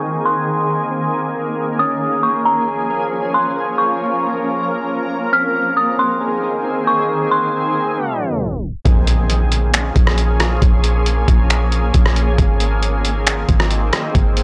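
Atmospheric cloud-rap hip hop in a spacious, melancholic half-time feel: an eerie, inharmonic FM bell carries the melody through chorus and analog delay, a shimmering, ethereal pad holds sustained chords with sidechain pumping, and mellow electric-piano-like synth keys play gentle arpeggios in the background under a filter sweep and tremolo. A tape stop hits at 8.0 seconds, and once the bell and keys fall away, a deep, round 808-style bass and a gritty, compressed sampler-style drum kit enter at 8.9 seconds. The kit brings a thumpy kick, hi-hat, rim click and finger snaps, opened by a very quiet electronic impact, all set in a dry hardware cassette recording.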